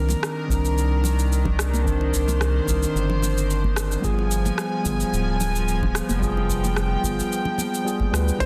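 A round, tube-saturated analog bass sits up front in this smooth, wistful sunset chillout excerpt at 110 BPM, underpinning a mellow tine electric piano with digital delay, floating sul tasto strings, a tape-warm R&B kit of hi-hat, rim click and shaker, dry background congas and bongos and a deep electronic kick over Cm9 moving to G7b9, before an intimate concert grand piano enters on a single C5 at 8.4 seconds.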